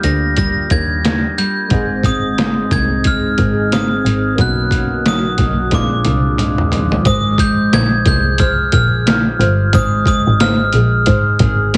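Nostalgic and hazy, this short cut from a longer indie and bedroom pop piece rides a gritty, pitched-down trip hop sampler-style drum kit with a thumpy kick and swung sixteenths, set up front alongside a bright, bell-like glockenspiel melody struck with brass mallets and coloured by analog chorus and slapback echo. A dark, fingerpicked nylon-string guitar with finger squeak, subtle chorus and warbly pitch drift pairs with a bowed double bass, smooth with vibrato, to carry the harmony from Ebmaj7 through Ab and Bmaj7 to Bb7, while soft, round electric-piano-like synth keys with phaser and cassette tape grain play until 7.1 seconds. A drum fill from 5.7 seconds leads into the closing Ab69, and the mix sits in light reverb with a heavily compressed, radio-like sound.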